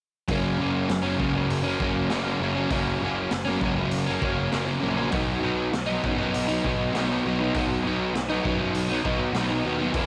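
A raw, small-room sound with light reverb frames this rowdy, swaggering garage rock excerpt in F# major, moving at 99 BPM in a straight 4/4 and shifting from F# to B at 5.1 seconds. An overdriven, double-tracked semi-hollow guitar sits up front with a hollow-body warmth, playing a picked riff, while a fuzz-drenched electric bass growls brightly in the background with tube saturation. The acoustic drum kit adds a high-tuned snare, boomy kick and hi-hat with a gritty, saturated, rolled-off character, all three parts playing together from 0.3 to 10.1 seconds.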